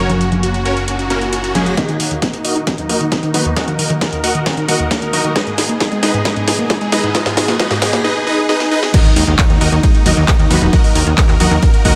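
Euphoric and driving, this uplifting trance passage runs at 134 BPM in a straight 4/4 and is cut from a longer piece. It opens on F# with huge, detuned supersaw chords carrying the melody up front, pumping against the sidechain through a low-pass filter and dub echo, while a barely audible glassy wavetable pluck adds a crystalline second line until 1.7 s and a plucky analog bass gives a funky sawtooth push. At 1.8 s a punchy electronic kick arrives alongside a lush, detuned unison pluck spinning arpeggios with dub echo. The techno kit sits up front with a cracking snare, metallic hats, congas, handclaps, ride and crash, building through drum fills as filter sweeps open the supersaws and arpeggios over D#m and G#m. After a very quiet electronic riser and swell, the drop lands at 8.9 s on D#m with an impact, the bass returning beneath the full texture in a moderate, lush hall reverb.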